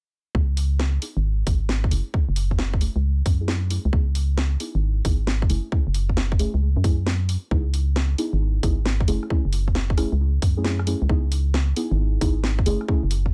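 UK garage in a two-step style, this short, skippy and bouncy excerpt runs at 134 BPM in C# minor with a swung sixteenth-note feel. A deep, mellow chord stab, soft and dark with a detuned, wave-folded character, carries chorus and digital delay and moves between C#m9 and F#m9 under a filter sweep. Beneath it, an organ-like FM bass sits up front, hollow and percussive with a fast attack that decays. A tight electronic kick drum also sits up front, and a garage kit enters at 0.6 seconds, adding bright hi-hats, a rim click and a cracking snare. The mix is dry, with little reverb beyond the drums' studio ambience.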